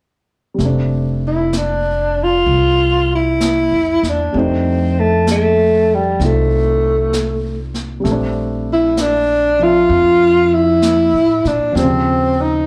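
Intimate and late-night, this jazz ballad drifts along at 65 BPM in 4/4 with a gentle swung eighth-note feel in F major, heard as a short cut from a longer live club performance played through the venue's PA. A woody upright piano opens at 0.5 s with accompanying chords, joined at 0.6 s by a dark, thumpy pizzicato upright bass on gut strings and a distant, roomy brush kit working brushed snare and hi-hat. The breathy tenor saxophone enters at 1.3 s and sits up front as the solo voice, its mellow subtone and vibrato carrying the melody in a low register. Plate reverb glows on the piano and saxophone, and the horn also carries a slapback echo, all within a moderate club ambience. The harmony moves through rich extended chords, from F69 and F13 to Bbmaj13 and finally Eb13 at 11.8 s.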